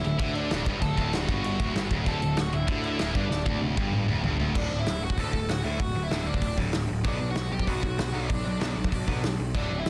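Punk rock excerpt at 193 BPM in D major, energetic and rebellious, where a bluesy distorted lead guitar carries the melody over a bright, overdriven stack guitar riff in the background, a tight distorted guitar riff that stops at 4.5 s, a growly fuzz bass, and an up-front yet roomy drum kit with dark cymbals whose fill runs from 3.3 to 4.6 s before the harmony moves from D to Bm at 7.0 s in a dense, heavily limited, dry mix.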